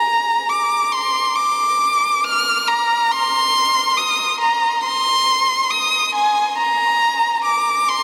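A single bowed violin sits up front and close, carrying the melody high in its register, between Ab5 and F6, with a warm tone, soft attack, vibrato and expressive portamento. An analog delay trails the violin's lines, and a huge ambient reverb with a 7.3-second tail soaks the mix in a dreamy haze. The mood is cinematic and brooding, a slow rock piece in C minor at 69 BPM in straight 4/4, tuned to A4 = 444 Hz. The whole 8-second excerpt, cut from a longer piece, works as a build-up, with the lone violin holding the spotlight from 0.0 to 8.0 seconds.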